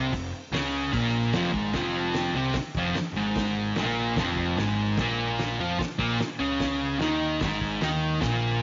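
The double-tracked fuzz guitar dominates this gritty, swaggering garage rock clip, sitting up front with a dark, distorted riff that spans F2 to F4 across the whole 8.6 seconds. Underneath, a picked electric bass adds round, overdriven fuzz with tube saturation, holding the low end from F1 to F2 at a lower level than the guitar. A cloth-damped drum kit enters at 0.1 s and stops at 8.3 s, its thuddy, muffled sound pairing a fat snare and tight kick with hi-hat, saturated and lo-fi with a rolled-off top. The track drives at 148 BPM in a straight 4/4 feel, in F minor, moving from an F minor chord to a Bb5 power chord at 5.0 s, after a short opening section gives way to a longer one at 1.7 s. A moderate echo chamber reverb with a 2.4-second decay surrounds the sound, and the top end is dulled, as the recording holds nothing above 7.5 kHz. The clip is cut from a longer piece.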